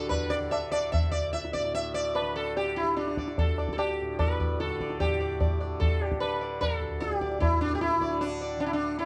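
Radiant and meditative, this short passage of Hindustani classical music is cut from a longer performance and gathers pace throughout its length. A plectrum-plucked sitar carries the melody up front, its bright, buzzing tone ringing with sympathetic strings and a round shimmer, set in a plate reverb. Beneath it a softly plucked tanpura holds a low drone at a quieter level, adding a gentle buzz of its own. High-tuned tabla enters at 0.1 s, close and dry with a short ring. The music moves into a new section at 5.0 s, heard in a modest small-room ambience with a dark, warm production.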